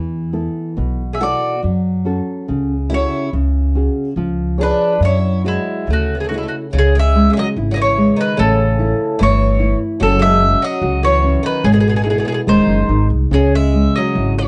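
Mournful and longing, this fado-style ballad moves at a rubato 72 BPM in 2/4, starting in F# minor and shifting to C# minor at 6.7 s. A small, fingerpicked nylon-string guitar and a woody, pizzicato upright bass sit up front from the start, and at 1.1 s a picked mandolin enters with the melody on its double strings, joined by a boxy, shimmering, octave-doubled twelve-string acoustic guitar carrying a second line. Light reverb and a dark production round out this excerpt from a longer piece.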